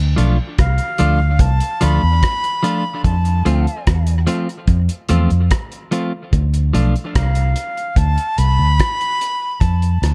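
A straight 4/4 dub reggae groove at 73 BPM sets a deep, meditative mood in D dorian, as a round, foam-muted vintage electric bass sits up front over a cloth-damped, thuddy drum kit of tight kick, hi-hat and rim click from 0.2 seconds, while a clean, compressed electric guitar with tape echo accompanies until 6.9 seconds and a breathy jazz flute with a chiffy attack and its own tape echo carries the melody from 0.6 seconds, all over a dry, dark production that moves between Dm and F.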